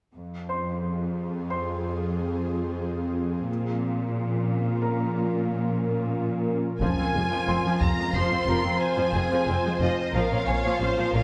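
Up-front cello section, rich and bowed with vibrato, anchors this brooding, tense cinematic cue in F minor at 90 BPM in 5/4, joined almost at once by an ethereal, detuned synth pad with chorus and built-in reverb and a bright grand piano with delay sitting in the background. At 6.8 s a focused violin section takes up the melody over distant violas and double basses, while a saturated, compressed taiko ensemble struck with hard sticks hits until 8.1 s, when a second violin section with a smooth top adds a lush second line. The whole hybrid orchestral-electronic cut sits in a wet concert hall, moving between Fm and Bbm before breaking off as part of a longer piece.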